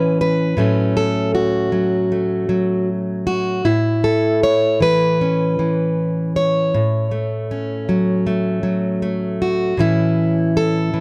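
Intimate and reflective, this short folk passage cut from a longer piece features a solo fingerpicked steel-string acoustic guitar, plugged in and placed up front with a warm, concert-like tone. Captured with close, detailed microphones and little reverb, the guitar moves gently between Aadd9 and F#m/A before settling on a plain A chord at 9.8 seconds, in a straight, unhurried 4/4 feel.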